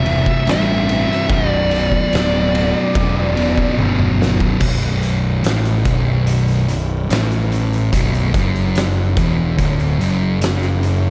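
A dark, thick fuzz guitar riff sits up front in this heavy, ominous stoner and doom metal excerpt at 72 BPM in 4/4 and B phrygian. A second fuzz guitar also plays a riff in the background until 4.6 seconds, while a distorted lead guitar with slapback echo carries a short melody until 3.8 seconds. The harmony moves from C to Bm early on. A growly, overdriven picked bass and an oversized low-tuned drum kit, with a fat snare, punchy kick and gritty, saturated tone in a bright stone room, anchor the dry mix, and a drum fill from 3.8 seconds leads into the second section.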